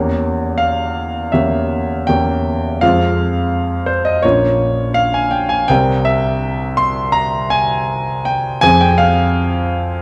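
This recording places a clear concert grand piano up front in a moderate recital hall, with an intimate, natural sound where the action noise is audible and the deep bass carries real weight. It is a romantic character piece for solo piano in F minor, taken from a longer work, moving at about 82 BPM in 4/4 with a freely bending rubato feel. The mood is bittersweet and stormy, and the piano spans from the low Bb1 up to C6 across the ten seconds heard here. The harmony opens on an Edim7 chord before settling onto Fm at 2.8 seconds, then passes through Bbm and C7 before returning to Fm at 8.6 seconds. The hall's moderate reverb, with a decay of about 1.7 seconds, surrounds the instrument.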